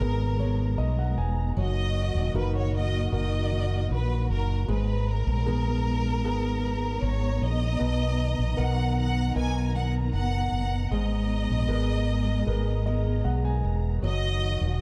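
A concert grand piano fill opens this heartfelt, hopeful pop excerpt, its tone clear and smooth with a deep, vintage bass, as the whole ensemble sounds together from the first moment. A symphonic violin section carries the melody, bowed with vibrato and sounding focused and close. Behind it, a studio string section holds lush sustained chords, expressive and distant, with vibrato and portamento. A jumbo steel-string acoustic guitar picks very quiet, full-bodied arpeggios with audible finger squeak, while a fretless electric bass sits up front with a round, direct, dark tone. The harmony moves between G#madd9, D#m and Bmaj7, the piano returns with a second fill at 12.5 seconds, and a small room reverb gives the whole a dark, warm production.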